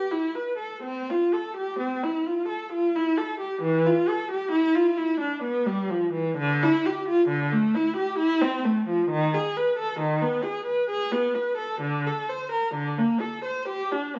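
Grave and solemn, this fragment of a baroque-style suite movement for unaccompanied viola moves at 66 BPM in 3/4, its beats uneven and pulled about with rubato, tuned to A4 = 435 Hz. A single bowed viola plays alone throughout, rich in tone with vibrato, soft attacks and expressive portamento, ranging from D3 to C5. It is heard from further back in a stone room with moderate reverb, and a dulled top end softens its edges.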